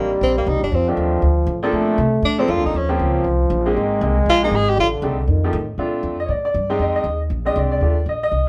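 A live-in-one-room studio sound with moderate reverb frames this sophisticated swing jazz excerpt: a clear, up-front tenor saxophone with light vibrato and scooped notes carries the melody over a mellow, whispered trombone second line, a brilliant upright piano with audible action noise and long sustain, and a woody, pizzicato upright bass, until the saxophone stops at 4.9 s and the trombone at 5.7 s, leaving piano and bass to finish the extended-chord progression alone.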